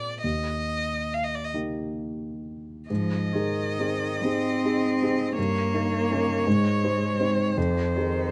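A single bowed violin opens with a lyrical melody in its upper register, its tone rich and focused with vibrato, over a grand piano accompaniment that reaches down into the bass. This is a slow romantic movement for piano trio in 6/8 with flexible rubato, heard as a short passage cut from a longer piece and tuned slightly low, to A4 = 436 Hz. The piano sits up front and sounds intimate, with short sustain and the faint mechanical noise of its action audible, and it stands a little louder than the violin. At 2.9 seconds a lone bowed cello joins with a second line in its middle range, woody and soft in attack with its own vibrato, as a new section begins and the harmony moves from Eb to Ab, then through Eb7/G and back to Ab before arriving at Fm. Close, detailed microphones and light reverb frame the trio, and the mood is warm and lyrical.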